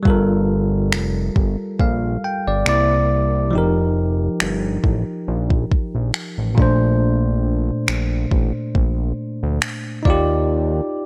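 Contemporary R&B with a longing, late-night mood, this short cut from a longer piece moves through lush extended chords such as Gm9 and Bbmaj9 at a slow, lightly swung pace. A bell-like, bright tine electric piano carries the harmony up front, while a fat, detuned sawtooth analog bass with a fast attack sustains low beneath it. The electronic drum kit offers finger snaps and a soft kick coloured by vintage 12-bit sampler grit, all in a dry, close sound.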